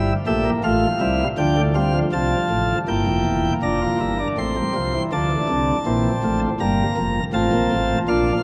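A chamber organ's principal chorus carries this short passage of a baroque-style four-part fugue, heard as a solo instrument for the full 8.4 seconds. The voicing is full yet chamber-scaled, with a crisp chiff at the start of each note, and the organ sits up front in the sound. Its lines span from deep tones at E1 up to C6, giving the counterpoint a joyful, lively character in a straight triple metre. The harmony moves from a diminished chord over G through F major inversions, then turns toward darker colours at 2.9 seconds with a half-diminished chord, A minor, D minor seventh and G minor before settling on F over A. A cathedral reverb with a long 6.1-second decay surrounds the organ, placing it in a vast, echoing space.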